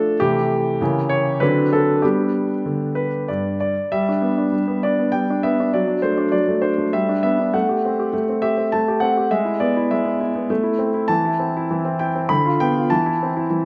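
A triple metre with a flexible rubato feel carries this graceful, cheerful classical-period sonatina cut from a longer piece, where a clear, polished baby grand piano plays solo, up front and present with long sustain, moving from an opening phrase into a second section at 3.9 seconds, all set in a wet recital hall reverb.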